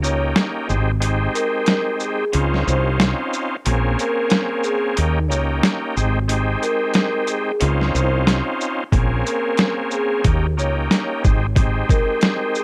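Boom-bap hip-hop at 91 BPM with a gritty, moody swing, this short cut sets a compressed, pitched-down sampler drum kit with a thumpy kick and overdriven snare, hi-hat and shaker up front beside a growly, round fretless bass under ensemble chorus that drops out at 11.8 seconds, while a shouting, key-clicking tonewheel organ with chorus vibrato and plate reverb carries Ab major seventh and Db major ninth chords and a mellow, airy vibraphone with slow motor vibrato and tape echo rings softly in the background, all with a cassette-tape haze.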